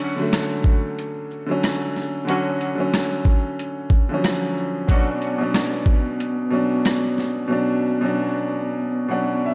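A clear concert grand piano and a gritty, sampler-style drum kit open this moody, tough boom-bap hip-hop fragment, cut from a longer piece and set at 92 BPM in B minor with a swung 16th-note feel. Up front, the compressed, overdriven drums carry a thumpy kick, a medium-tuned snare, rim clicks, hi-hat and shaker, with the grain of a kit re-recorded in a small room. The filtered piano, smooth and vintage with deep bass, plays accompaniment over a Dmaj7 chord. At 2.3 seconds a distant, roomy horn section adds soft-attack jazz stabs with vibrato and octave doubling, trailed by tape echo. At 4.9 seconds a mellow, flute-like tonewheel organ settles into the background on a sustained Bmadd9, with chorus vibrato, key click and a stopped rotary speaker, while the drums drop out at 7.4 seconds. A lush hall reverb soaks the whole mix in a dreamy haze.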